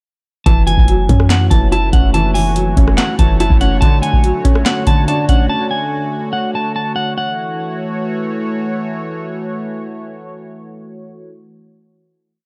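A half-time trap beat at 143 BPM drives this menacing, dark hip hop piece in F# minor. A booming analog drum machine sits up front with a deep kick, crisp snare layered with handclaps, metallic hats and rim clicks, all roughened by vintage 12-bit sampler grit, while a clean, sine-toned 808-style bass holds long sub notes that follow the kick until 3.8 seconds. A slightly broken-up electric guitar repeats a looping melody through spring reverb and delay, and a felt-muted upright piano plays a soft, intimate arpeggio in eighths like a sampled loop. A detuned sawtooth pad with chorus sustains F#m7 and Dmaj7 chords; the drums stop at 5.5 seconds, and once the guitar ends at 8.4 seconds the pad holds the final chord alone.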